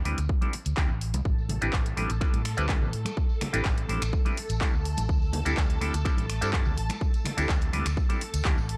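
Groovy and funky, this filtered disco house excerpt moves at 125 BPM in A minor, resting on a single Am11 chord as a punchy, overdriven electronic kick sits up front beside a house kit of finger snaps, handclaps and hi-hat, with bright congas and tambourine tucked in the background. A dark, round, foam-muted fingered bass with tube saturation and a hollow, nasal clav through a combo amp with phaser carry the groove, both sidechain-pumped and dulled by a low-pass filter. From 1.3 seconds a lush sawtooth string machine adds slow-attack sustained chords with phaser and ensemble chorus, all set in a gritty, dry recording with a cassette tape character.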